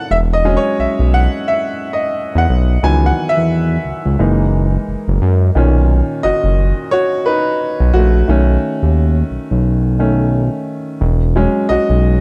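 A clear, woody upright piano opens this sensual, relaxed neo-soul and R&B fragment, cut from a longer piece, with a synth bass entering at 0.1 seconds. At 88 BPM in 4/4 and B major, the music has a lazy swing on the sixteenths, and the piano carries the lead as a solo voice through both halves, sitting up front with a vintage character. Beneath it, the bass holds a low, up-front line built from sawtooth and square-wave tones, with a fast attack, sustained notes, vibrato and an evolving, smooth timbre. The harmony moves through rich extended chords, from E6 and C#m11 to F#13, then settles on Bmaj9 at 5.6 seconds, where the second section begins, before passing through B9 to E69. A small room ambience and a dark, warm production give the whole piece an intimate, late-night feel.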